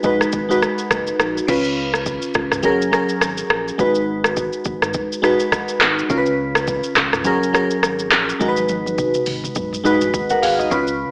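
Joyful and romantic, this afrobeats clip at 104 BPM rides a swung 16th-note feel as a crystalline FM electric piano with chorus and phaser sits up front, spinning sparkling, decaying chords through Abm7, Db7 and Gbadd9. An electronic afro-pop kit, also up front, brings a deep kick, metallic hats, handclaps, rim clicks, shaker and a tape-warm edge, with a drum fill from 8.4 to 10.7 seconds. Underneath, a full sine-and-triangle sub bass with an octave layer sustains in the background, and the whole cut carries a moderate plate reverb and an AM radio tone.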